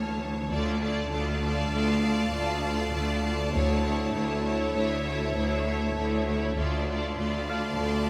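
A distant violin section carries a hovering melody over clear, focused viola and cello sections, a morphing wavetable pad with ensemble chorus, a warbling analog drone, and a smooth double bass section entering at 0.5 seconds, while a delicate music box tinkles and a high violin section glints in the background in this eerie, mysterious cinematic cue in 5/4, cut from a longer piece and set in a moderate recital hall reverb.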